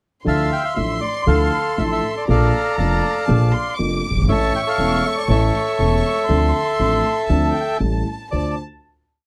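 Passionate and melancholic, this short, complete tango in D minor moves at 119 BPM in 4/4 with a rubato feel, its reedy, smooth bandoneon carrying a motif-based melody of period phrases up front while a dark concert grand piano, mellow with audible action noise and deep bass, and a woody pizzicato upright bass on steel strings mark a marcato tango rhythm in four. Above them, a chamber violin section plays a soft-attack, sul tasto counter-melody with vibrato, bowed close and intimate. The dry, close 1970s-style studio sound carries light reverb, and the piece settles on a final Dm7 chord at 8.3 seconds.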